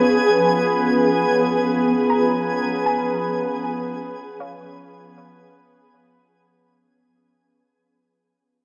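In a straight 4/4 pulse, this luminous ambient fragment fades out across its 6.7 seconds as an evolving, detuned wavetable pad up front holds sustained chords through ensemble chorus and phaser under a filter sweep, a sparkling FM granular texture twinkles with octave-up shimmer, a reedy, breathing pedal harmonium drones alongside, and a soft, round pluck traces very quiet arpeggios, the whole bathed in huge reverb and the warbling pitch drift of worn cassette tape.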